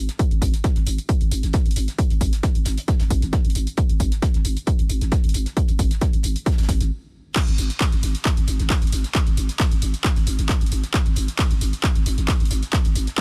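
Hypnotic and driving, this peak-time techno cut, taken from a longer piece, rides a straight 4/4 pulse led by an overdriven, up-front electronic kick and a growling, buzzy 808-style bass that pumps against the sidechain through a low-pass filter. Around them, an overdriven techno kit layers hi-hats, handclaps, tambourine, ride and crash cymbals with pumping hats and percussion, while a dry, dark, cloth-damped acoustic kit with a rolled-off top sits in the background, its fat snare and hats high-pass filtered. After a brief stop from 6.9 to 7.4 seconds, the drop arrives and carries the groove through to the end.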